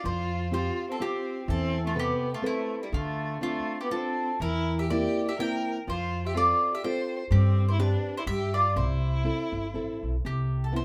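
Up front, a woody, double-strung picked mandolin carries the melody of this sunny, lively Italian folk serenade in a swung 3/4 at 123 BPM in C major, over a rich, focused bowed violin second line with vibrato that drops out at 10.0 s, a bright, small fingerpicked nylon-string guitar accompaniment, and a warm pizzicato upright bass sitting close, all played live together in one room with moderate studio reverb in this brief cut from a longer piece.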